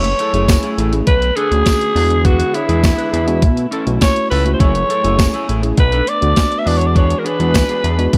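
Early-eighties boogie funk at 102 BPM in a funky, slick excerpt cut from a longer piece, where a growling, raspy alto saxophone carries the melody up front over a fat, detuned sawtooth bass with a filter sweep, a crisp 8-bit drum machine with a thumpy kick, a dark, picked clean guitar riff with analog chorus, a worn, slightly out-of-tune tine electric piano and a jingly tambourine in the background, and very quiet bowed strings holding sustained chords, all dry as the harmony cycles from F#m9 through Bm7, E7 and B9sus4.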